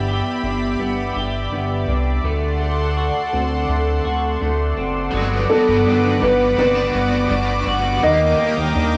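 Under a light studio reverb, this floating, dreamy dream pop excerpt in G major moves at 83 BPM, with a lush, warbling detuned pad holding sustained chords, a twangy, slightly broken-up electric guitar through a small old amp picking arpeggios with analog delay, and a dark, glossy chorused synth bass up front, before a biting overdriven guitar with tremolo joins at 5.1 seconds and a soft, felt-muted upright piano with audible action noise carries the melody from 5.5 seconds over chords moving from G6 and D7 to Gmaj7 and Ebmaj7.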